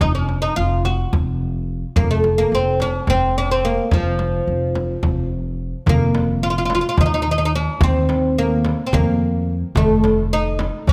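Turkish makam ensemble music in F makam hicaz, moving at 215 BPM counted in eighths across a straight 7/8 metre, with a stately, warm mood in this short cut from a longer piece. A bright, woody fretless oud, plucked with a plectrum on double strings, carries the melody up front between F3 and Gb4, tuned to A4 = 437 Hz. Beneath it, a dark, growly upright bass played pizzicato on steel strings sits equally close, thumpy and woody in the low register from F1 to F2. A close, dry frame drum keeps the percussion in the background from the start, and at 5.9 seconds a crisp, small metal-shelled darbuka joins it, high-pitched and set back in its own live room as the second section begins. Close, detailed microphones capture the players inside a moderate recital hall reverb of about 1.7 seconds.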